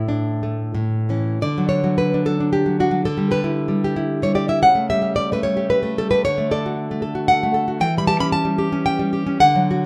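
Romantic solo classical guitar, heard in a brief excerpt cut from a longer piece, in triple metre with uneven beats and a flexible, rubato feel. The mood is warm and nostalgic. A single fingerpicked nylon-string guitar sits up front, its warm acoustic tone ranging from A2 to B5 across the phrase. The opening moves from a suspended chord to its resolution before the music settles into a new section at 1.4 seconds. There, the harmony drifts gently through tonic, seventh and inverted dominant colours. A light reverb gives the guitar a soft halo of space.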